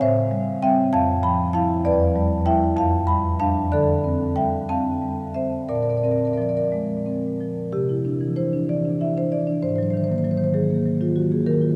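A solo marimba played with medium mallets carries this contemporary classical fragment, its tone full and close-miked, sitting up front with a dry, immediate presence. The instrument spans a broad compass from E2 up to B5, and the 6/8 metre moves with a free, rubato feel that gives the music a playful, warm character. The harmony drifts through rich extended chords such as Am7, Fmaj9#11, Dm11 and Bb9 in the opening stretch. At 7.7 s a new section begins on Cadd9 and turns toward Ab9 before the recording cuts off at 11.8 s, as it is taken from a longer piece. Around the marimba, a vast cathedral space adds a long, echoing reverb that lingers well after each chord.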